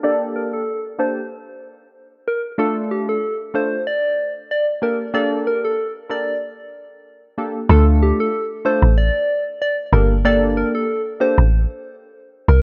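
Sultry and mellow, this afrobeats excerpt at 94 BPM sets a round, gently struck synth lead with shimmering vibrato against sawtooth analog keys opening under a filter sweep over Gmadd9 and Dm, until a woody, punchy log drum bass enters at 7.7 seconds, all wrapped in light reverb and the warbling pitch drift of worn cassette tape.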